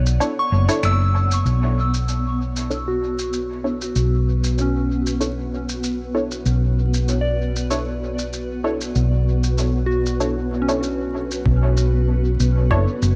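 Deep and meditative, this ambient dub excerpt moves at 96 BPM in B minor with a lightly swung 4/4 feel, resting on a Bm11 chord under a faint vinyl crackle and light reverb. An up-front, round, dark hollow-body electric bass with tube saturation anchors a cloudy, evolving granular pad, while a pure, warbling FM bell spins arpeggios through chorus and dub echo, and muted sawtooth chord stabs carry dub echo and a filter sweep from 1.5 to 11.5 seconds. Muffled, tape-toned shaker and finger snaps tick along from 0.1 seconds, and a thumpy, compressed kick drum joins in the background only from 11.5 seconds.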